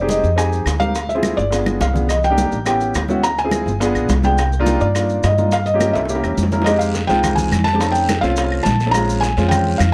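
A brisk, straight 4/4 pulse at 210 BPM drives this sophisticated, sultry Afro-Cuban jazz excerpt in C minor, shifting to F minor at 6.7 s, with drum fills around 1.7 s and 6.0 s. A soft, felt-muted upright piano carries the intimate melody over a grand piano's warm chordal accompaniment rich in altered and extended harmonies, both showing audible action noise, while a woody pizzicato upright bass sits up front. Background bright congas, tight high-tuned bongos, and dry claves join close grainy maracas, with a raspy guiro entering at 6.7 s, all set in a moderate club reverb.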